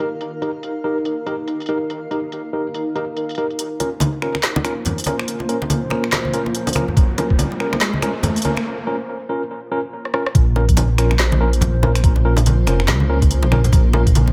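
Swung, half-time 4/4 drives this dark, cavernous deep dubstep passage. A blurred granular cloud pad and worn, slightly out-of-tune tine electric piano stabs with dub echo sit over a deep house kit of woody snare, smooth hats, snaps, claps and rim clicks. Ringing, close conga hands join at 3.8 s, and an electronic riser and a brief gritty kick hit mark the build-up. At the drop at 10.3 s, a thumpy pitched-down kick arrives along with a rumbling, detuned saw bass sitting up front.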